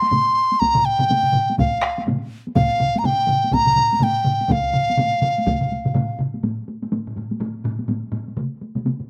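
Swung sixteenths in 4/4 propel this driving, ceremonial Japanese traditional taiko excerpt, where a mellow, close-miked large dizi with a buzzing membrane, crisp chiff and slapback echo carries the melody up front between F5 and C6 until 6.2 s, over four layered taiko ensemble parts struck with heavy and hard sticks, the drums continuing on their own into the closing section that begins at 6.4 s.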